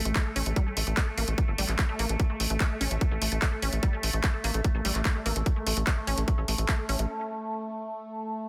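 Psychedelic trance, intense and driving, cut from a longer piece: an overdriven electronic kick sits up front alongside a layered kit of handclaps and bright hi-hats in a small room, under a tight, punchy sawtooth sequencer bass. Above them, a lush, detuned unison pluck plays a riff through digital delay and sidechain pumping, while a resonant drone of evolving, moving overtones holds sustained chords with chorus and its own reverb. The kick drops out at 6.8 seconds and the pluck at 7.0, then at 7.1 seconds the bass and the kit stop for a brief break, leaving the drone alone until 8.5 seconds, all within a dense, heavily limited modern master with light reverb.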